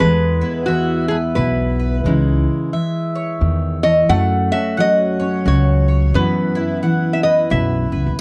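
The sound is dry and close, with little reverb, like a 1970s studio recording. This is pastoral acoustic folk for a duo or small band, taken from a longer piece. It moves in a swung 3/4 at 88 BPM in E major, with chords running from E through C#madd9 and F#m to Bsus4/F#. Out front, a lap resonator guitar takes a solo played with a steel bar and fingerpicks, its metallic, nasal slide tone carrying through the whole 8.2 seconds. Underneath, a full-bodied jumbo steel-string acoustic guitar is fingerpicked as accompaniment, and a pizzicato upright bass adds a woody, growly low end, both close and prominent. A mandolin, further back, fills in with rounded, double-strung picked arpeggios that give the piece a warm glow.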